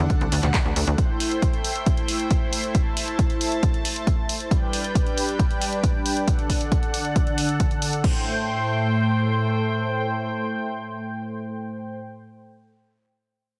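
A silky, detuned analog string pad opens this excerpt of soaring, driving uplifting trance, its sustained chords shimmering with ensemble chorus, vibrato and a moving notch while sidechain pumping makes them breathe. Beneath it, a tight, nasal sequencer bass with a sawtooth and square-wave filter pluck sounds briefly, pumping along until it stops at 1.0 seconds. A punchy electronic kick sits up front, joined by an analog drum machine adding crash cymbal, handclaps, hi-hat and toms, both re-recorded in a large room and running until 8.1 seconds. The harmony moves from D through Am7 and G back to D, then settles on Am7 as the string pad carries on by itself to the end. Light reverb and a digital ambience surround the parts, and the whole mix has a heavily compressed radio sound.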